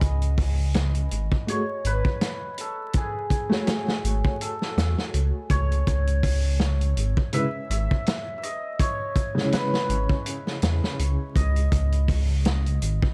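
A deep, rumbling detuned saw bass sits up front in this melancholic, hypnotic trip hop excerpt at 82 BPM, its beating unison tone anchoring a swung 16th-note groove from a punchy, rolled-off vintage drum kit with a medium-tuned snare. A bright, shimmering cimbalom carries the melody through dub echo over chords moving from F#madd9 to C#m7, while a soft, felt-muted upright piano with tremolo adds intimate, mellow accompaniment from 1.5 to 11.7 seconds. The dark production places everything in a small room, dusted with vinyl crackle.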